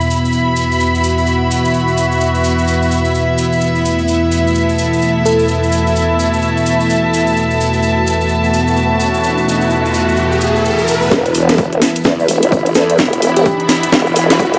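A swung 128 BPM bass house groove in 4/4 starts with a grainy, distant cabasa under a bright, detuned sawtooth pad holding sustained chords with sidechain pumping and a filter sweep, beside an intimate, softly bowed chamber string section with light vibrato, all set in a lush hall reverb. A sparkling, bell-like FM electric piano drifts by in the background with dub echo, and a riser creeps in from 8.8 seconds. At 11.1 seconds the aggressive, gritty build-up arrives: a nasal, saturated vowel-sweep wobble bass pushes up front with overdrive and chorus, a punchy, tape-tinged electronic kick joins, and a garage kit with a cracking snare and hi-hat plays a drum fill until this cut-off section ends.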